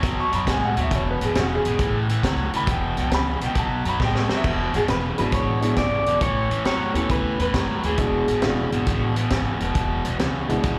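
Heard as a live club gig through the venue's PA with light reverb, this swaggering, soulful electric blues shuffle in E mixolydian swings at 136 BPM, with a bright, overdriven stack guitar riff carrying spring reverb and slapback echo over thumpy pizzicato upright bass, a gritty vintage kit with dark cymbals and a high-tuned snare that plays a fill at 4.0 seconds, and clear, woody upright piano, while a slightly broken-up, lo-fi electric guitar through a small old amp carries the melody with subtle chorus from 4.8 to 8.7 seconds in this excerpt cut from a longer piece.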